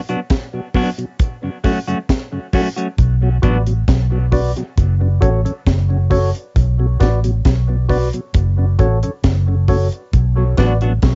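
A round, punchy, foam-muted electric bass sits up front from 3.0 seconds in this hypnotic, deep dub reggae cut from a longer piece, moving at 67 BPM in F# minor over a Bm to F#m chord change. A dry, acoustic drum kit with a high-tuned snare and tight kick plays throughout, joined by a mellow tonewheel organ with key click, chorus vibrato, slow rotary speaker and dub echo, and by a bright, twangy clean guitar that drops out at 3.6 seconds. Hollow, percussive organ stabs with a fast attack, chorus and dub echo punctuate the groove, and the whole home cassette recording has a muffled top and little reverb.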